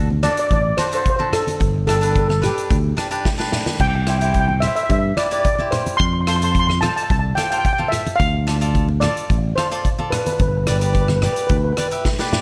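Sunny and bouncy, this calypso excerpt moves at 109 BPM in a straight 4/4, with a shimmering lead steel pan played with medium rubber sticks carrying the melody up front while a crisp, picked cavaquinho bathed in plate reverb picks through chords of D, G, C, F, Dm and G. A fingered electric bass sits forward with a direct, amped tone, low-tuned congas struck with hard hands add thick-skinned, close percussion, and a polished street-band drum kit with a boomy kick, medium-tuned snare, rim clicks, hi-hat and dark crash cymbals fills out the groove. Drum fills land at 3.3 and 12.1 seconds, and the whole mix sits in a light reverb.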